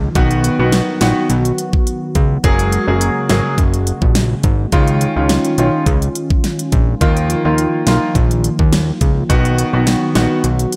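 A clear, polished concert grand piano accompanies this tough, sultry dancehall excerpt at 105 BPM, carrying chords from B through Gbadd9, Dbadd9 and Ebsus2 with subtle chorus and sidechain pumping over a knocking, layered pop drum kit with crisp hats, a fat, saturated analog bass, a hollow, flute-like pad sitting dark in the background, and a barely audible downlifter that ends at 2.4 seconds, all in light reverb.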